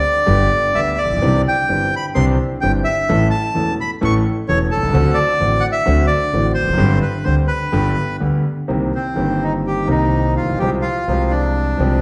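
A reedy, up-front bandoneon carries the melody in this melancholic, dramatic rubato tango fragment, over clear, deep-bassed concert grand piano accompaniment and a woody pizzicato upright bass, all in a large, reverberant studio, with a new section arriving at 8.7 s.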